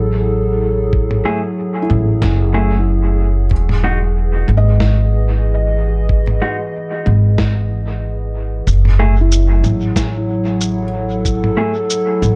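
A woody, up-front pizzicato upright bass anchors this spacious, hazy ambient dub excerpt at 93 BPM in F# dorian, where a warbling, nostalgic tape-like pad holds chords moving from F#m9 to Emaj7 and back, a muffled, thumpy electronic kick enters at 0.9 seconds, a lo-fi sampler-style kit of shaker, snare and toms drifts through dub echo, dark, clean guitar stabs carry 12-bit grit, and a soft, boxy felt-muted upright piano arpeggiates through analog delay with its action noise audible, all in a dry, echo-heavy mix with a dulled top end.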